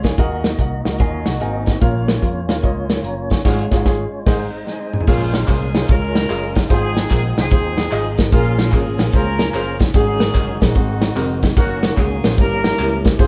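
A hopeful, soulful uptempo gospel groove at 148 BPM with a swung feel opens with a punchy, up-front acoustic drum kit, a dark, mellow baby grand piano, an amped fingered electric bass and a fat tonewheel organ on slow rotary speaker in the background, joined only until 1.8 s by a clean, picked electric guitar; after a band accent and a key-clicking organ fill from 4.3 s, a vintage jazz-style horn section takes the melody at 5.1 s over band-limited tambourine and group handclaps, all in a small room with moderate reverb.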